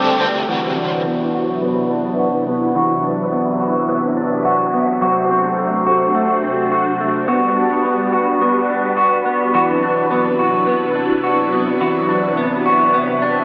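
A huge, wet ambient reverb and the warble of worn cassette tape, heard as if through a small speaker, wrap this dreamy, ethereal dream pop excerpt in C lydian at 106 BPM in a straight 4/4. A clean electric guitar picks compressed, up-front arpeggios through lush chorus and tape echo, while a swirling, vintage string machine holds evolving sawtooth chords with a slow attack, phaser and ensemble chorus. A biting, overdriven double-tracked guitar with tremolo sounds only for the first second, and a filter sweep runs from 0.5 seconds under chords moving from Cmaj9#11 through D7 and Gmaj7 back to Cmaj9#11.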